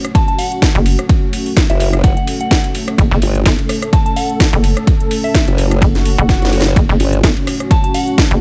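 Bass house at 127 BPM in F# phrygian with a swaggering, bouncy 16th-note swing, built on an overdriven, punchy electronic kick up front, an overdriven house kit with cracking snare and metallic hats, and a gritty sampler-style soul kit tucked into the background. A hollow, knocking FM bass enters at 0.8 seconds and a saturated formant-sweep wobble bass joins at 1.7 seconds, both pumping against the kick beneath a deep, moody detuned analog pad and a soft, pure synth bell melody coloured with chorus, phaser and delay. Near the end of this excerpt an electronic swell sits in the background as a drum fill lands at 6.3 seconds, all set in a digital ambience.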